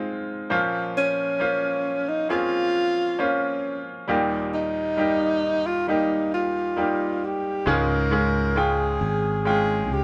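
A warm alto saxophone carries the melody up front with vibrato, a subtone, and a soft attack in a jazz style, over a brilliant, polished grand piano accompaniment in a slow, hopeful pop ballad at 67 BPM. The emotional mood deepens at 7.7 seconds when a growly, punchy fretless electric bass enters as the harmony moves to Db. The band sounds as if playing live together in a stone room with a moderate reverb, and the passage is cut from a longer piece.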